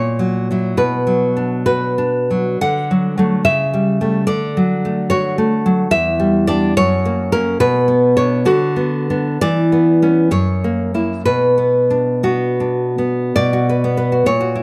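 Close, detailed microphones catch every nuance of a solo nylon-string guitar, set in a recital hall with a moderate reverb that gives each note a graceful tail. This is a romantic classical guitar piece in B minor, moving in a lilting 6/8 at roughly 51-75 BPM counted in dotted quarters, with a free, rubato feel that lets phrases breathe. The fingerpicked guitar sits up front with a full-bodied, deep classical tone, spanning from E2 up to F#5, and finger squeaks add an intimate, human touch. Despite the minor key, the mood comes across as sunny and warm, as the harmony drifts from an opening F#7/A# into Bm, then through D, A7/C#, Em7 and F# before settling on Bm again. A turn through Bm/D and Bmadd11/E leads to an F#7 at 10.3 seconds and a resolution on Bm at 11.3 seconds, before the opening phrase begins to return at 13.4 seconds as this 14.6-second fragment of a longer piece ends.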